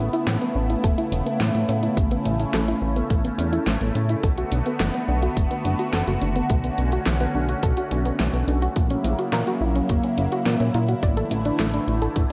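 The recording sits in a moderate recital-hall reverb with a digital ambience, giving this synthwave fragment a nostalgic, nocturnal glow at 106 BPM in a straight 4/4, in B minor. A bright, swirling pad of detuned sawtooths holds sustained chords up front, colored by phaser, chorus, shimmer reverb and sidechain pumping. A soft, round pluck plays arpeggios through chorus, digital delay and shimmer reverb, with a filter sweep running across the whole passage. Underneath, a glossy, retro synth bass mixes pulse and sawtooth tones, thickened by tube saturation and carrying sidechain pumping of its own. A pop drum kit enters at 0.1 seconds with hi-hat and a fat snare in gated reverb, and a punchy electronic kick joins at 0.8 seconds. The harmony moves from Aadd9 to Bm7, then F#7/A# and finally Asus4 in this section cut from a longer piece.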